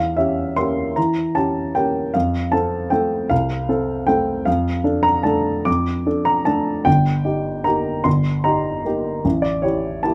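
In a 3/4 at 152 BPM with uneven, rubato beats, this sparkling, elegant classical waltz for solo baby grand piano opens in F major over an Edim7 chord before turning to D minor at 4.5 s and ending on A7 at 9.2 s, the dark, mellow tone sitting up front and intimate with audible action noise and short sustain, captured by close, detailed microphones in light reverb as a fragment cut from a longer piece.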